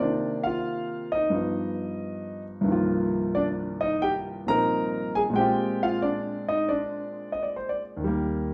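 Cool and late-night in mood, this short solo jazz passage for concert grand piano moves at 90 BPM in 4/4 with a swung eighth-note feel, set in C minor and tuned to A4 = 439 Hz. The piano carries everything alone across its 8.5 seconds, ranging from C2 up to Bb5 and sitting up front with an intimate, vintage character, deep bass and audible action noise. The harmony opens on Cm9 and G7b13, then a new section from 2.7 seconds moves through Cm11 and Bb9 before arriving on Eb at 8.0 seconds. The instrument is recorded live in a large studio with a moderate reverb that gives the smooth tone a gentle sense of space. It is cut from a longer piece.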